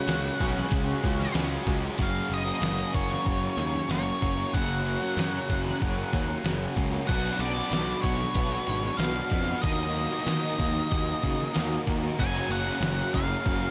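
A straight 4/4 pulse comes from a detuned 8-bit drum machine, overdriven and up front, with a thumpy kick, a medium-tuned snare, hi-hat and crash cymbal, paired with a faint, jingly vintage tambourine. This blissful, wistful slice of shoegaze and dream-pop rock is cut from a longer piece. A round, punchy fuzz bass sits forward in the mix, while three overdriven guitars play riffs in the background: a bright double-tracked part, a picked part washed in reverse reverb, and a hollow-body part with subtle chorus. Above them, a dark octave-fuzz lead guitar carries the melody through tape echo, and an airy, flute-like pad holds soft sustained chords with a slow attack and gentle chorus. A brief opening on C#sus4 gives way at 2.0 seconds to a longer passage moving through F#, Bmadd9 and D#m before settling on F#maj7 at 12.2 seconds, all bathed in a haze of digital ambience.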